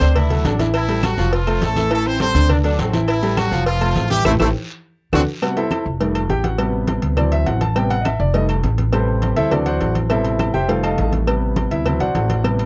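A brilliant, punchy horn section carries the melody up front in this festive salsa cut at a brisk 205 BPM, while a clear saxophone section with light vibrato and a smooth top adds a second line beneath it. Both horn groups stop at 5.2 seconds, during a band accent and a short drum fill, and from 5.4 seconds the concert grand piano takes over with a solo, its intimate, polished tone showing deep bass, long sustain and audible action noise. The thumpy pizzicato upright bass with gut strings sits up front throughout, while low-tuned congas ring in the background beside a tight, high-tuned cowbell struck with hard hands. Compressed, saturated agogo bells and timbales, woody claves and a raspy, band-limited guiro, heard only in the first half, fill out the percussion. The harmony cycles through D, F and Am7 chords, and the dry 1970s-style studio sound with light reverb keeps the joyful groove intimate and immediate.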